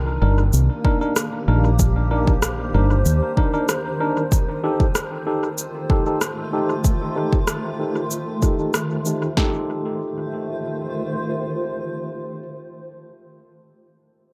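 Ambient dub at 95 BPM in F mixolydian, hazy and peaceful, cut from a longer piece: a cloudy, evolving granular pad holds mellow, blurred chords from Cm7 to F7, while an up-front fingered electric bass, foam-muted and warm, plays only until 3.2 seconds. Clean tine electric piano stabs sit forward through a combo amp with dub echo and a filter sweep. They are joined at 0.5 seconds by tape-warm electronic cabasa and rim click carrying their own dub echo, then at 0.8 seconds by a deep house kit with a deep kick and a punchy, overdriven snare. The drums fall away by 9.5 seconds as a closing section lets the pad and piano hang in a moderate spring reverb.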